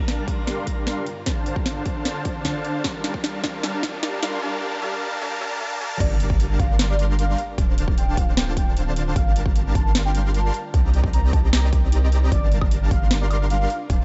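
Future bass in G minor at 152 BPM with a half-time feel, this dreamy, bittersweet excerpt from a longer piece builds for six seconds before dropping. Huge, detuned supersaw chords carry the riff from the start under a filter sweep and sidechain pumping, while a very quiet, shimmering pad with an ethereal octave-up glow sustains chords beneath, and a faint riser climbs toward the drop. A trap kit with a sharp snare, metallic hats, crash and woodblock plays an overdriven fill during the build, joined by a punchy, layered electronic kick sitting up front. At 6.0 seconds an impact marks the drop, where a deep, mellow 808-style bass enters with long sine tones and a velvety sawtooth lead takes the melody, colored by chorus, vibrato and tape echo. The chords cycle through Gm7, Dm7 and Cm7 in a dark production with light digital ambience.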